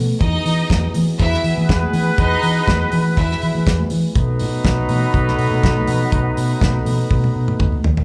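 Celebratory and joyful, this short disco excerpt moves at 122 BPM in E major, shifting from Emaj7 to B7 as a dark French horn section holds sustained chords over a round, punchy, foam-muted electric bass. A clear string section carries a bowed second line with vibrato until 3.6 s, a vintage pop-style horn section adds octave-doubled stabs from 1.2 s, and bright, high-tuned congas sit distant and very quiet behind a dry, up-front 70s drum kit with a fat snare and tight kick. The band sounds as if it is playing live in one large studio room with moderate reverb, and a drum fill arrives at 7.1 s.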